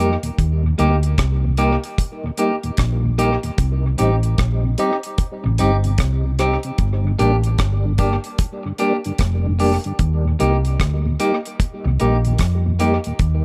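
Swung sixteenths at 75 BPM in 4/4 carry this laid-back, serious roots reggae excerpt, where a deep, dry drum kit with tight kick, hi-hat and rim click enters at 0.2 s under analog delay beside an up-front, dark, round hollow-body fingered bass, while a clean, picked electric guitar with tape echo and a mellow tonewheel organ with chorus vibrato, slow rotary speaker and analog delay move through Eb, Cm and Gm in a small, echo-heavy room.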